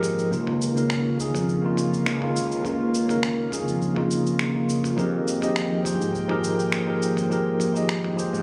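A clean tine electric piano sits up front in this relaxed, smooth sunset chillout passage at 103 BPM in 4/4, its medium tremolo and tape echo colouring a move from Db69 at 0.3 seconds to Fm11 at 5.0 seconds. Beneath it, an airy, breathy pad holds soft, chorused chords in the background, while a growly, punchy fretless electric bass keeps to its low register. A gritty, overdriven sampler-style kit of finger snaps, shaker and toms is joined by a deep analog electronic kick from 0.3 seconds, all captured on a phone in the room with a club reverb, cut from a longer piece.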